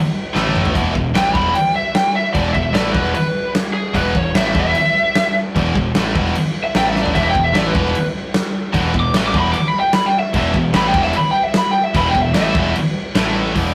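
Opening at 0.3 seconds on a drum fill from a huge, punchy arena kit with bright cymbals, this anthemic, powerful hard rock piece at 150 BPM drives through A5 and E5 chords on three picked, high-gain distorted rhythm guitars in the background (one double-tracked, very quiet and returning at 7.1 seconds) and a growling overdriven bass, while a lead guitar through a small cranked amp takes an up-front solo from 1.2 seconds, all in a rough rehearsal-room recording with light reverb and warm saturation.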